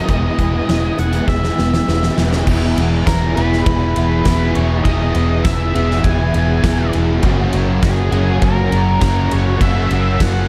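A straight 4/4 pulse at 101 BPM drives this wistful, blissful excerpt of shoegaze-leaning dream-pop rock in E lydian, with a huge acoustic arena drum kit giving a fat snare, punchy kick, hi-hat, ride and crash in a big room, and a drum fill arriving at 1.3 seconds. Up front, a dark, round, foam-muted vintage fingered bass sits low and amped, while a very quiet, jingly tambourine enters close at 3.1 seconds. The octave-fuzz lead guitar carries the melody with distortion and tape echo, over a bed of overdriven guitar riffs: one double-tracked and biting, one in the background with analog chorus, and a hollow-body semi-hollow guitar in the background with reverse reverb. A very quiet picked twelve-string acoustic guitar adds shimmering, octave-doubled arpeggios with fresh strings and finger squeak. A bright, swirling sawtooth string machine with phaser and ensemble chorus holds slow-attack chords at the opening and returns at 7.3 seconds, as the harmony moves from Emaj7 to E and on to F#add9, all wrapped in a dark, warm studio reverb.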